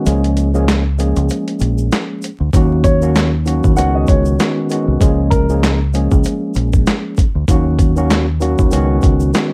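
Moody and gritty, this boom-bap hip-hop excerpt rides a swung 97 BPM groove. A compressed, overdriven sampler-style drum kit with thumpy kick, medium-tuned snare, hi-hat and handclaps sits up front beside a round, deep fingered electric bass, while a worn, slightly out-of-tune tine electric piano comps on Bbm7/Db, Ebm7 and Db9sus4 through its built-in speakers and a hazy cassette-tape tone. A grainy tube shaker lingers in the background. From 2.8 to 5.8 seconds a mellow, woody upright piano adds a vintage melody, all under light reverb and vinyl crackle.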